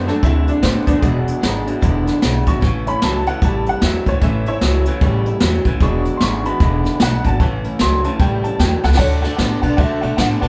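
Recorded live in a moderately reverberant large studio room, this upbeat, rollicking rockabilly snippet opens with a jangly, detuned honky-tonk upright piano taking a solo over a twangy, slightly broken-up electric guitar riff, a woody, thumpy upright bass, a picked steel-string acoustic guitar in the background and an up-front brush drum kit with a boomy kick, until a drum fill at 8.8 seconds leads into a brief phaser-tinged electric guitar melody at 9.0 seconds.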